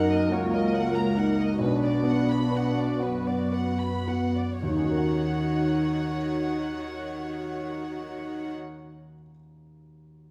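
In a rubato 6/8 at roughly 34-50 BPM in dotted quarters, this bittersweet, moving cinematic fragment in Eb minor slows during its first 4.6 seconds. The chords pass from Gb6 to Bm and settle on Ebm7. A mellow French horn section holds sustained chords over a close, intimate cello section playing sul tasto with light vibrato in the bass. A dark, woody viola section with vibrato sits in the background, and a pure, floating violin section plays a soft-attack second line. A polished grand piano accompanies until 10.3 seconds, and a very quiet thumb-plucked concert harp rings out arpeggios until 9.4 seconds, all set in a wet recital hall reverb.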